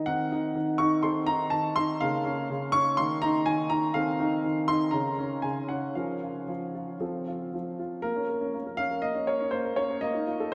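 A classical-period piano sonatina in Bb minor, restless yet elegant, unfolds at 122 BPM in 4/4 with a rubato feel. A solo grand piano, warm and present with long sustain, sits up front across Db3 to Db6 and is bathed in a wet cathedral reverb of a vast, echoing space, moving through shadowed diminished harmonies before a new section arrives at 8.0 seconds in this brief fragment of a longer piece.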